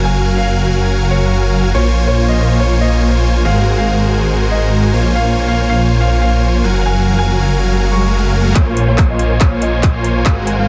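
A dreamy, bittersweet future bass excerpt in Bb minor at 141 BPM with a lightly swung half-time feel opens on huge, bright detuned supersaw chords, a thick chorused saw bass and a clear baby grand piano melody set back in the mix, all three pumping with sidechain over chords moving from Gbmaj9 to Bbm7, before a very quiet riser at 6.8 s leads into a build-up at 8.6 s where a hard-clipped, overdriven electronic kick and a trap kit of handclaps and metallic hats play a drum fill while the piano takes a filter sweep.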